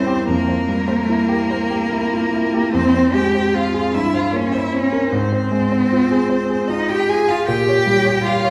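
Heard from further back in a reverberant recital hall, this melancholic, yearning fragment of a slow romantic piano trio movement in F minor drifts in a rubato 6/8 at 50 BPM, with a warm, distant violin singing the smooth vibrato melody above a rich, focused cello second line that sits up front and louder, while a clear, worn concert grand with deep bass and short sustain supplies the accompaniment through chords from C7/F to Gdim/Bb across the 8.5 seconds.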